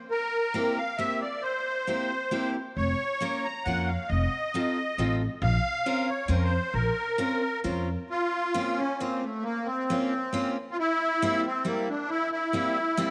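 A reedy, shimmering musette accordion opens this whirling, nostalgic musette waltz in Bb harmonic minor at 135 BPM, carrying the melody in a loose, rubato 3/4, with a bright, full-bodied picked steel-string guitar joining just behind it at 0.5 s. A woody, growly pizzicato upright bass steps in at 2.8 s and drops out by 7.9 s, as the chords move from C7 through Bbm/F and F7 to Bbmadd9. The phrase then repeats, all set in a moderate plate reverb and cut from a longer piece.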